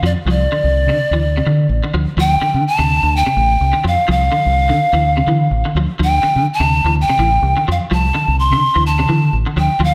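A clean, twangy electric guitar picks arpeggios over a dark, round, punchy fingered dub bass that sits up front, holding a single minor-seventh chord in a hypnotic, driving afrobeat groove with a swung sixteenth-note feel. Almost at once a breathy bamboo pan flute takes the melody up front, its soft attack, chiff, vibrato and lifted highs trailed by a slapback echo, while the guitar carries an ensemble chorus. A moderate large-studio reverb surrounds this brief cut from a longer piece, which runs to 9.9 seconds.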